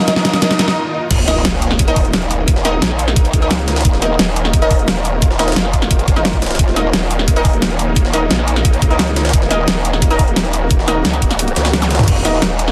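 A brief build-up opens this dark, tense excerpt of technical drum and bass at 175 BPM in Eb minor, with a riser, a drum fill, a swarming, warbling drone phased in the background and bold, punchy orchestra-hit-like synth stabs carrying reverb and delay, before a short break. At 1.1 seconds the drop lands with an impact, bringing in an aggressive, saturated growl bass that wobbles through a formant filter and pumps against an up-front knocking kick, a huge snare with bright hats, and a very quiet, gritty, pitched-up jungle-style kit underneath. Near the end the kick drops out from 11.4 seconds for another drum fill and a brief zap, all within a dense, heavily limited master with light reverb.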